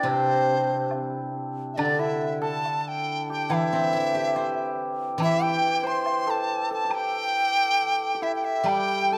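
Graceful and pastoral, this short excerpt of Chinese traditional chamber music moves with a free, rubato feel in a duple metre. A large bamboo dizi carries the melody up front, its pure tone edged by a buzzing membrane, with gentle vibrato, a soft attack, lifted highs and an expressive quality. Beside it, a hammered dulcimer plays a bright, shimmering second line that rings out close to the listener, while a steel-string zither, played with fingerpicks, fills in a silvery, warm accompaniment beneath. A very quiet woodblock, dark, close and dry, sounds from 0.1 seconds to 8.9 seconds. The ensemble sits in a moderate stage reverb, and the music passes from its opening phrase into a second section at 1.8 seconds.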